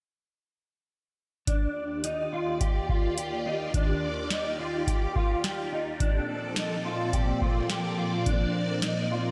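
A lush hall reverb gives this short dream pop excerpt a big arena sound, with a blissful, ethereal mood in a straight 4/4. From 1.5 s, a phased string machine holds sustained chords, its bright, sawtooth tone swirling and evolving through ensemble chorus and phaser, with a slow attack and long release that lend it a vintage character. A mellow electric guitar, dark, clean and fingered, plays arpeggios in a narrow middle register, colored by ensemble chorus, delay and slapback echo. A booming analog drum machine sits slightly louder and up front, pairing a deep kick and crisp snare with metallic hats, and it stops at 9.0 s, just before the other parts. The harmony moves from Ebmaj7 to Bbmaj9 at 6.0 s.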